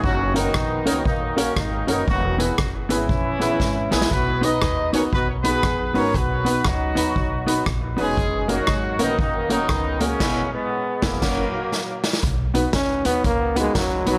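Heard in a moderately reverberant room, this cheerful, joyful ska excerpt swings at 118 BPM in B major, with a punchy, up-front horn section carrying the tape-echoed melody until 12.0 s over woody pizzicato upright bass, an airy street-band drum kit with dark cymbals and a boomy kick, a mellow, clean electric guitar and a long-sustaining upright piano playing echoed stabs in the background, before a bright, smooth-topped trombone takes the solo from 12.8 s.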